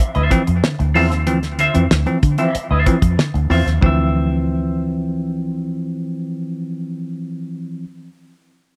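A round, punchy, foam-muted fingered electric bass sits up front in this cool, driving funk excerpt in D minor at 94 BPM, anchored on a Dm9 chord. A damped 1970s acoustic kit with a fat snare and tight kick drives the groove until 4.0 seconds, while a bell-like tine electric piano enters at 0.3 seconds with direct stabs treated with tape echo. A clean, twangy picked electric guitar adds bright accompaniment through wah and spring reverb, all within a dry, close 1970s-style studio sound.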